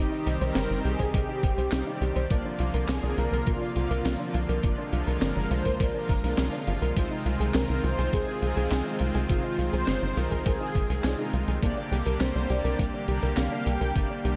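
Nocturnal and nostalgic, this excerpt of synthwave moves at 103 BPM in a straight 4/4, its dreamy mix soaked in lush hall reverb over a C minor progression that shifts through Bb/C, Fm7/C and Gm/C above a held C. A mellow synth brass carries the melody with a round, detuned sawtooth tone, chorus, vibrato and a diffuse ambient delay, while a very quiet string machine traces a shimmering, vintage second line of violins beside it. A second, darker synth brass part punctuates with stabs roughened by 12-bit sampler grit and delay, and a detuned analog pad holds sustained chords, its chorus, tremolo and sidechain pumping lending a gentle breathing motion. In the background a soft, nasal pluck spins arpeggios through chorus and delay, while a tight, punchy sequencer bass drives underneath, sitting up front in the mix. The crunchy breakbeat kit enters at 0.3 seconds with handclaps, hi-hat and a high-tuned snare, its top rolled off, and a thumpy electronic kick, re-recorded in a large room, joins at 1.0 seconds.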